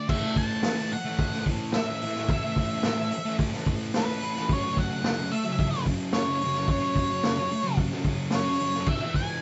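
Garage rock with a swaggering, raw mood, heard in a short excerpt cut from a longer piece. An octave-fuzz lead guitar with a dark, distorted tone carries the melody high above a thick, double-tracked fuzz guitar riff down low, while a vintage drum kit with a punchy kick, medium-tuned snare, hi-hat and dark crash cymbals sits up front alongside the riff. The band sounds like it is playing live in one moderately ambient studio room, with a rolled-off top end that keeps the whole mix murky and close.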